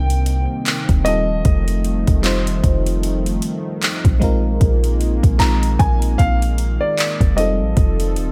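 A digital ambience surrounds this brief, sensual excerpt of contemporary R&B, with a boomy 808-style bass and a produced electronic drum kit sitting up front. At a relaxed 76 BPM in 4/4 with a light swing on the 16ths, the kit enters at 0.1 seconds with a soft kick, metallic hi-hat and handclaps, re-recorded in a large room. The deep, sine-toned bass anchors the low end, dark and clean with a fast attack that decays. An FM electric piano with a warbling, vintage tone and a faint noise layer plays mellow accompaniment through a phaser, while a detuned sawtooth-and-triangle analog pad with a sub octave holds smooth, slow-blooming chords, colored by chorus and sidechain pumping. Over this, a warm baby grand piano carries the longing melody, trailed by tape echo, as the harmony moves from Cm9 to F9, Bb9sus4 and F7.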